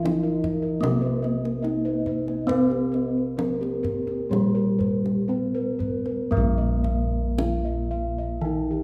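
A wet recital-hall reverb, with about a 1.6-second decay, surrounds this serene, shimmering Javanese gamelan piece, which is cut from a longer work. It is set in B-flat pelog barang and moves in a straight 4/4 at 57 to 78 BPM. A mellow bronze metallophone, played with padded disc mallets and heard in a boxy small-room tone, carries the melody. Beneath it, a softer, paired-tuned metallophone sits in the background as accompaniment, its beating adding shimmer. Above, a wooden-mallet metallophone rings out arpeggios until 6.3 seconds, where the second section begins. Bright, round bossed gongs stand up front on the bass, while a second set of bossed gongs, struck with padded beaters, adds soft arpeggios higher up. A deep, close kendang drum provides percussion until 7.6 seconds.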